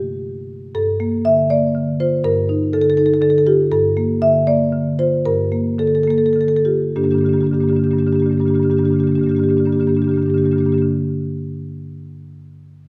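A woody, up-front marimba played with medium mallets carries this hypnotic, flowing excerpt of contemporary classical music, spanning G2 to E5 in G minor with its tuning set to A4 = 438 Hz. Moving in a straight 6/8 at roughly 66-82 BPM, it passes through rich harmonies such as Gm9 and Ebmaj9/G, slows between 3.0 and 7.0 seconds, and settles onto a plain G minor as a new passage begins at 7.0 seconds. A lush recital-hall reverb surrounds the rosewood bars, letting each note bloom into the room.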